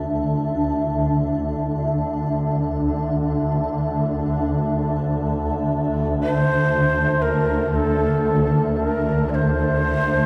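Unfolding in free time, this ominous, cavernous ambient passage cut from a longer piece opens on a swarming, detuned drone with a filter sweep, low and up front, beneath a blurred granular cloud pad holding a Dsus2 chord, until a breathy, hollow shakuhachi with tape echo enters at 6.2 seconds, all bathed in a 5.1-second cathedral reverb.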